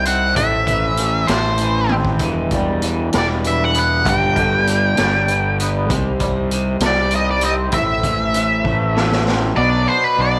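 Psychedelic rock at a slow 65 BPM in a straight 6/8, this short, hypnotic and dark excerpt is cut from a longer piece and moves through Am, Em, G, Cm, Am and Bm. An octave-fuzz lead guitar carries the melody up front with a distorted, shadowy tone and slapback echo, while a fuzz-laden fingered bass also sits up front with an overdriven, warm growl. A twangy electric guitar plays a bright, clean, compressed riff, double-tracked and colored by phaser. In the background, a reedy vintage combo organ holds sustained chords with light vibrato. A raw garage drum kit with a boomy kick, gritty saturation and a rolled-off top enters at 0.1 s, drops a fill between 1.9 and 2.2 s, and stops at 9.4 s, all bathed in a moderate spring reverb.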